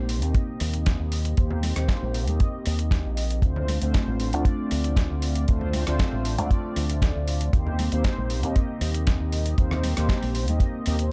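A round, punchy fingered electric bass with an envelope filter sits up front in this sensual, groovy nu-disco excerpt at 117 BPM, joined by a tight, dry kick drum, a gritty, compressed sampler-style soul kit with a fat snare, hi-hat and rim click, soft-handed congas ringing in the background from 1.5 seconds, and dark, brassy synth brass with chorus, phaser, tape echo and sidechain pumping moving between Eb6 and Dm7, all in a mix with little reverb.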